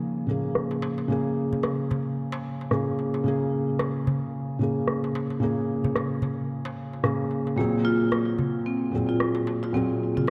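This organic downtempo piece moves at 111 BPM in 4/4 with a lightly swung sixteenth-note feel, set in Bb minor with a mystical, earthy mood. A felt-muted upright piano carries the accompaniment throughout, sitting up front with a soft, mellow, intimate tone, thick felt and audible action noise, its sound trailed by tape echo. An electronic rim click, re-recorded in a small room and darkened by low-pass filtering, arrives at 0.6 seconds, followed at 0.7 seconds by a crisp, metal-shelled darbuka played with soft hands and heard close and dry. At 7.6 seconds the harmony shifts from Bbm7 to Ab7/Bb as a marimba struck with medium mallets joins with warm arpeggios, also carrying tape echo, while the rim click drops out at 9.3 seconds. A wet concert hall reverb and a dark, warm production wrap the sound, and the passage is cut from a longer piece.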